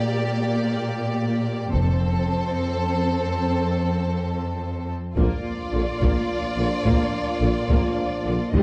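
Cinematic, epic orchestral film score in 6/8 and Bb major, moving at 71 BPM in dotted quarters with an adventurous, triumphant mood, heard as a short cut from a longer piece. Bowed strings open together, with a warm, expressive first violin section carrying the melody over a focused second violin line, a soft-attacked viola section in the background and a smooth, even cello section placed close and up front on the bass. At 1.7 seconds a taiko ensemble enters with heavy sticks in a small-room acoustic, and the distant double bass section adds its lush low end in a brief appearance before returning for good, while the harmony shifts from Gm/Bb to F during the opening build-up. At 5.2 seconds the music lands on Bb as the brass join in the background, with a dark, roomy French horn section and a clear, vintage-toned trombone section holding sustained chords above a lightly vibrato tuba on the bass. 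The whole is bathed in a wet scoring-stage reverb within a dark, warm production.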